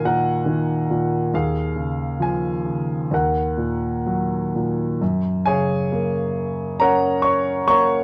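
A present, up-front grand piano with long sustain carries this wistful, melancholic classical fragment from a longer piece, played solo with rubato in 4/4 over an Ebmadd9, Db/Eb and Ebm progression before shifting to F# major at 5.0 seconds, all within a dark, warm production and moderate studio reverb.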